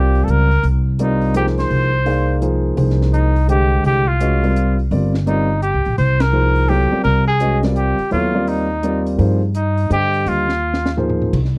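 An up-front trumpet carries the melody in a vintage jazz style, its tone shaded by light vibrato and scooped notes. This intense, hypnotic modal jazz cut swings in 3/4 and rests on a Cm11 chord. A grand piano accompanies with an intimate, natural sound, long sustain and audible action noise. The upright bass is woody and growly, plucked on steel strings and placed close to the front. A compact cocktail drum kit joins at 0.2 seconds with a dark, smooth small-room sound, a high-tuned snare and a punchy kick. The band hits an accent together at 6.2 seconds, and a drum fill runs from 10.6 seconds in this dry, close recording with a 1970s studio feel.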